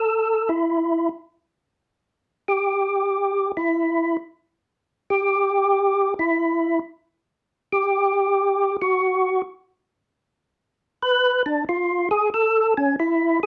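A lone percussive tonewheel organ opens this soulful, bluesy jazz fragment, sitting up front in a moderate studio room with a short, natural ambience. The feel is a swung 4/4, and at 1.8 seconds the organ moves into its solo passage, carrying on alone until 13.5 seconds. Its voice is fat and lightly overdriven, with third harmonic percussion and a touch of key click giving each note a crisp attack. A slow rotary speaker and chorus vibrato add movement and shimmer to the tone. The line stays in a compact middle register, keeping the mood soulful and bluesy throughout this short cut from a longer piece.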